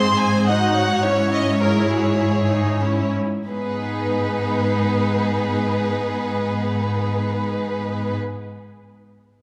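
Urgent and restless, this brief excerpt from a quick classical-period orchestral movement unfolds with a rubato feel, slowing over its first 3.5 seconds before moving into a new section. A focused violin section carries the melody with rich, vibrato-laden bowing, while a second, clear and distant violin section traces a lush supporting line and a smooth-topped viola section fills in the accompaniment. Beneath them, an up-front cello section holds a close, bowed bass note, and the strings sit in a moderate concert hall reverb.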